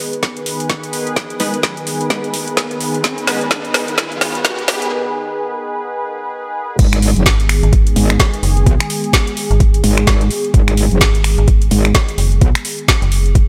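Bass house with a bouncy, swaggering feel and a swung groove, cut from a longer piece. A bright, airy pad of detuned sawtooth chords with chorus pumps against the sidechain across the whole clip, while a knocking, overdriven kick and an up-front garage kit of woody snare, metallic hats, finger snaps and crash drive the build-up. During the drum fill, a background riser and a bold, punchy orchestra-hit-like stab with dub echo appear briefly, and a filter sweep carries the tension into a break at 4.9 seconds. The drop lands at 6.8 seconds, where a saturated, aggressive wobble bass with chorus takes the low end, joined at 7.3 seconds by a dark, decaying FM bass, both pumping with sidechain compression. The mix sits in a light digital ambience, with the basses and kit placed up front.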